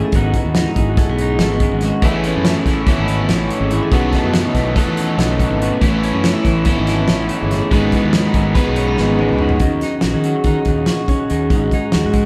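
Set in a brisk 9/8 at 285 eighth-note beats per minute with a straight feel, this wistful, bright slice of math rock and midwest emo is cut from a longer piece and sounds like a band playing live together in one room under light reverb. A loose indie drum kit sits up front with a fat snare, a tight kick, hi-hat and toms in an acoustic small-room sound, joined by a dark, round, punchy fuzz bass that is fingered and overdriven. A clean, compressed twelve-string electric guitar, shimmering through spring reverb, and a warm, ringing, fingerpicked concert harp weave accompaniment and arpeggios through the whole passage over chords moving from G#m7 to Amaj9 and back. At 2.0 seconds an up-front, double-tracked overdriven guitar with a scooped, bright edge adds a picked riff, playing until 9.6 seconds, as a drum fill that begins at 9.0 seconds wraps up. The closing stretch shifts to D#m7 before settling again on G#m7.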